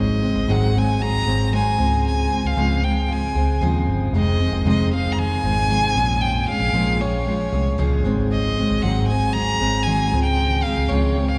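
Violin, steel-string acoustic guitar and a dark, foam-muted electric bass open together and play throughout this wistful, reflective acoustic pop excerpt at 115 BPM in straight 4/4, the rich, nasal bowed violin singing an up-front vibrato melody over the full-bodied picked jumbo guitar and round vintage bass as chords move from Ab7 through Dbmaj7, Fm7 and Bbm7, all bathed in a wet cathedral reverb with a faint mains hum in the church-like room.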